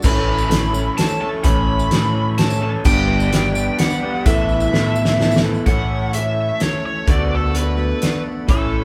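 A biting, overdriven lead guitar carries the melody over a warm, open-road folk rock and heartland rock groove at 128 BPM in 3/4, set in A mixolydian and moving through A, G and Asus2 before landing on A and D6. Up front, a loose indie drum kit with a fat snare, punchy kick and dark cymbals pumps in the room alongside a round, fingered electric bass, while a lo-fi electric guitar through a small old amp plays a slightly broken-up riff. A picked plugged-in acoustic guitar with audible finger squeak, a reedy accordion with light tremolo tuning and a jingly tambourine that stops at 5.6 s sit in the background, and a drum fill from 4.7 to 5.7 s leads into the next section of this band-in-one-room excerpt.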